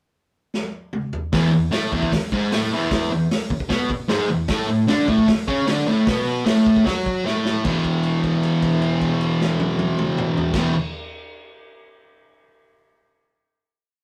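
A rough rehearsal-room recording with saturated grit and a short, wet reverb frames this swaggering, raw garage rock piece in straight 4/4. A vintage drum kit with dark cymbals, a tight kick and a rolled-off top plays a fill at 0.5 seconds, then settles beneath the mix in a stomping groove as the bright, double-tracked fuzz guitar enters up front at 1.3 seconds with a distorted octave riff over E and A69. After another drum fill, the guitar lands on a held E5 chord at 7.6 seconds that rings out to the close.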